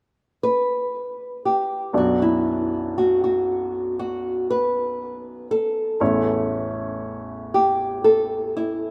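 A fingerpicked nylon-string guitar opens the piece at 0.4 s, carrying the melody between E4 and B4 in a dark, boxy, small voice that sits up front. This heartfelt, emotional pop piece moves at a slow 59 BPM in a straight 4/4, tuned slightly below standard pitch. At 1.9 s a baby grand piano enters as accompaniment, its polished, present tone spanning from deep A1 up to D5, while the harmony settles on B minor before shifting to A major at 6.0 s. A lush hall reverb lends the pair a gentle sense of space, though the overall mix keeps the rough, unvarnished character of a home demo. The recording is a short excerpt from a longer work.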